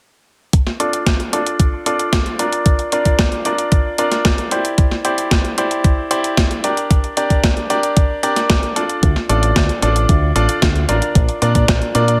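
An overdriven, thumpy electronic kick and a clean 12-bit drum machine with hi-hat and a gated-reverb snare open this melodramatic, danceable italo disco excerpt in D minor at 113 BPM, joined at 0.8 seconds by bright, intimate baby grand piano stabs with audible action noise, delay and a filter sweep over a Dm–Bb–Cadd9–Gm progression, before a fingered electric bass with an envelope filter enters up front at 9.0 seconds, all set in light digital ambience.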